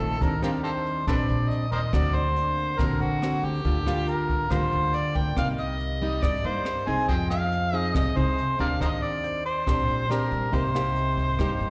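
An overdriven, gritty harmonica leads this intimate, melancholic bossa nova in C minor at 140 BPM, sitting up front with light vibrato, scooped notes and tongue slaps in a jazz-style solo that rings with plate reverb and slapback echo. Beside it, a dark, fingerpicked nylon-string guitar also sits up front, its classical playing carrying audible finger squeak and its own slapback echo. A pizzicato upright bass on gut strings adds a woody, thumpy low end, while a brushed drum kit keeps a smooth groove of hi-hat, rim click and a boomy kick. A very quiet, natural baby grand piano fills in softly beneath the other parts. The harmony moves through chords such as Eb6, Daug7, Gm7/D and Fm7. The whole passage is heard as a live gig through the venue's PA with moderate club reverb, an 11.7-second excerpt cut from a longer piece.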